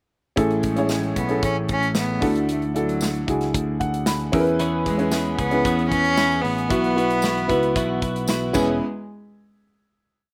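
A clear, woody upright piano with a slightly detuned, boxy character anchors this hopeful, piano-driven pop piece at 114 BPM in E mixolydian, playing syncopated close-voiced chords with grace notes and a short fill at 3.5 seconds, while a nasal, sul tasto cello carries a floating motif-based melody of call phrases, both touched with slapback echo. Underneath, a round picked electric bass holds a sustained line, a polished studio drum kit with a punchy kick drives a pop backbeat, and a jingly tambourine sits in the background on the backbeat. At 4.6 seconds a clean, compressed twelve-string electric guitar joins with strummed eighths in open chord shapes, building the dry, close-sounding pre-chorus through Amaj7, Dadd9, E6 and Bsus4 toward a final hit at 8.8 seconds.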